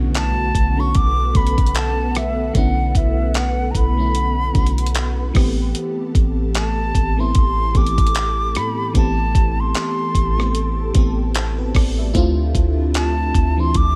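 A gently swung 16th-note groove at 75 BPM in 4/4 anchors this late-night contemporary R&B fragment, driven by a gritty, compressed soul-sampler drum kit sitting up front with a thumpy kick, rim clicks, hi-hat and handclaps. Beneath it, a soft 808-style bass supplies deep, round, dark tones that decay after a fast attack, while an FM electric piano with a soft pad layer adds lush, dreamy chords treated with chorus. Further back, a mellow, ethereal pad holds sustained chords with a slow attack, colored by ensemble chorus, built-in reverb and a phaser. A concert flute carries the longing melody from 0.2 seconds onward, its crisp attack and vibrato echoed by a digital delay. A barely audible electronic impact marks the opening, and the harmony moves from Bm9 to Am9 at 5.3 seconds, then to Dm9 at 12.1 seconds, all in a dry mix.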